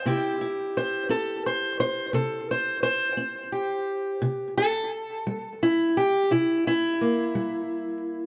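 A fingerpicked steel-string parlour guitar carries this excerpt and plays alone for the full 8.3 seconds, its dark, boxy tone sitting up front with a touch of analog delay. This is swaggering, soulful acoustic country blues in C mixolydian, moving at a slow 58 BPM in a straight 12/8 and resting on a C7 chord. Light reverb gives the room some air, and the passage is cut from a longer piece.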